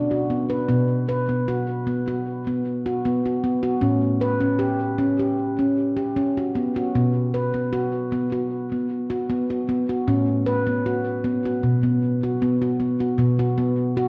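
A solo handpan of nitrided steel carries this gentle, meditative world piece, its ringing, mellow tones struck with soft fingertips and heard close and up front. The instrument moves between A2 and B4 at an unhurried 77 BPM in a straight 4/4, drifting between B minor, B power-chord and A harmonies. A diffuse ambient delay trails the handpan, while a wet echo chamber reverb with a 1.5-second decay surrounds the whole sound. The recording has a worn, warbling old-cassette character, marked by a warbly pitch drift. Cut from a longer piece, the passage settles into its single section from about 0.7 seconds until 13.2 seconds, ending at 14.1 seconds.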